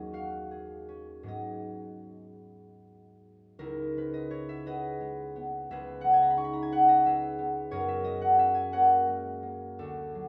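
A solo concert harp, up front and ringing with an acoustic warmth, opens this gentle, wistful classical fragment, drawn from a longer piece, in a rubato 6/8 at roughly 50-61 BPM in C# dorian, tuned to A4 = 444 Hz; its fingerpicked lines span C#2 to C#6 and drift from D#m11 and G#m7 into a second passage at 3.6 seconds that moves through C#m9 and F#add9 to a closing Dmaj7 at 9.8 seconds, all held in a moderate recital-hall reverb.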